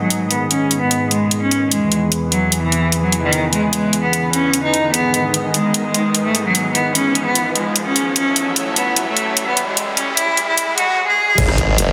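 A dense, heavily limited modern mix bathed in lush hall reverb opens this chaotic, aggressive heavy wobble dubstep build-up at 149 BPM in a half-time feel, set in G# phrygian. A rich, bowed cello with vibrato carries the melody up front through a filter sweep and digital delay, over thick, detuned unison pad chords that pump with sidechain. An overdriven dubstep drum kit plays crash cymbal, hi-hat and rim click while a background riser and swell build across G#m, E and A, until at 11.4 seconds an impact lands as a sawtooth formant-sweep wobble bass and a knocking electronic kick drum hit on G#5.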